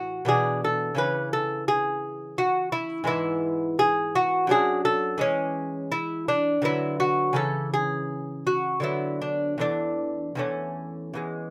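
A bright, delicate solo lute, fingerpicked on doubled gut strings with some octave-doubled courses and placed up front in light reverb, plays a flowing, serene baroque-style classical dance in A major and 3/4 at a rubato 76-86 BPM, moving through gentle chord changes such as C#madd11, D/F# and Bm/D before settling on A/E near 9.6 seconds in this 11.5-second excerpt cut from a longer piece.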